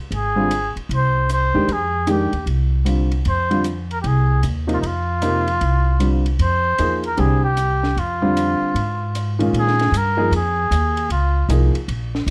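A swung eighth-note feel in 4/4 drives this cool, searching modal jazz excerpt, cut from a longer piece. A compact cocktail drum kit sits low in the mix, its hi-hat, ride cymbal and high-tuned snare sounding dark and smooth in a small room. The pizzicato upright bass is placed up front, woody, warm and growly on steel strings. A concert grand piano comps with an intimate, natural tone, deep bass, short sustain and audible action noise. Over them a cup-muted trumpet carries the melody up front, soft and veiled with a breathy quality, light vibrato and a smooth top. The harmony rests on Fm69 before shifting to Bbm7 at 9.5 seconds, and the trumpet stops at 11.5 seconds, all within a light reverb.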